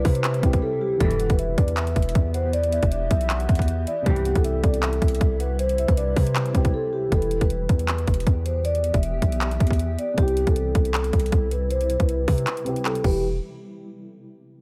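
Hip hop trap with a menacing, hard-hitting half-time feel, driven by an up-front electronic drum kit of hard-clipped kick, metallic hi-hats, handclaps and crash, over a punchy, heavy 808-style bass. A mellow, close-miked vibraphone with soft mallets carries the melody, joined until 7.1 seconds by a round octave-layered synth lead with chorus, tremolo and delay, while a dark, intimate grand piano accompanies and a cloudy, evolving granular pad holds chords in the background. Veiled, muted strings add brief distant stabs, and a filter sweep runs through the second half from 7.1 to 13.2 seconds, with the kick dropping out at 12.5 seconds, in this cut from a longer piece.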